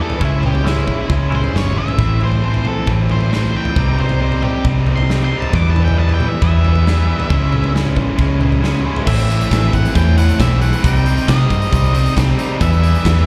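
Quiet-loud alternative rock at 135 BPM in a straight 4/4, this short cut from a longer piece feels angsty and cathartic. An octave-fuzz lead guitar, dark and distorted with slapback echo, takes a solo from the start until 9.1 seconds, ranging from E4 up to D6 over a double-tracked, crunchy overdriven rhythm guitar riff that is bright and picked and also carries slapback echo. Underneath, a vintage muted electric bass gives a round, punchy, foam-muted low end and sits as the loudest part, while a big acoustic rock kit with a punchy kick, medium-tuned snare, hi-hat, toms and crash rings out in a bright stone room. A clean, twangy electric guitar with tremolo appears only briefly in the background, playing arpeggios between 0.2 and 1.8 seconds. The harmony cycles through C#m, Am, Cm and Em, and it sounds like a live gig heard through the venue's PA with a touch of club reverb.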